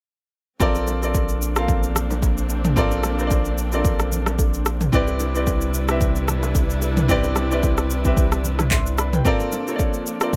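Amapiano with a relaxed, swung feel, this short cut from a longer piece moves from Bbmaj9 to Cmaj9 at 4.9 s and back at 9.3 s. An up-front, layered deep house kit with a deep kick, handclaps, rim clicks, shaker and toms sits over a thick, saturated sine sub bass that drops out at 9.2 s, while a clear, smooth concert grand piano with short sustain plays accompaniment up front. Lush, warm bowed strings with vibrato hold sustained chords in the background, very quiet bright congas and bongos played with soft hands add acoustic colour, and the whole mix stays dry.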